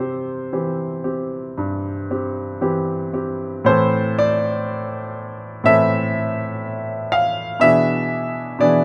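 Heard through close, detailed microphones with light reverb, this short cut from a longer romantic classical character piece presents a clear, present grand piano playing alone with hopeful, warm feeling and rubato at 56-62 BPM in 4/4, moving from C major into A minor at 3.7 s and arriving on an E7/B chord at 7.6 s before it breaks off at 8.8 s.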